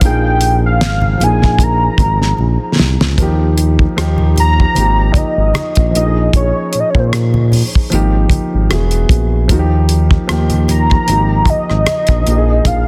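A swung 76 BPM groove in 4/4 drives this soulful, late-night R&B and neo-soul excerpt, where a damped 70s drum kit with a fat, softly clipped snare and tight kick sits up front beside a smooth sawtooth-and-triangle synth bass, very quiet low-tuned congas and a dark, woody upright piano with audible action noise, while a velvety, detuned synth lead with chorus, tape echo and vibrato carries the melody from 0.1 seconds, moving from Bb7sus4 into Ebadd9 after a drum fill at 2.4 seconds and on through Absus2, Bb5 and Eadd9 in a dense, heavily limited small-room mix.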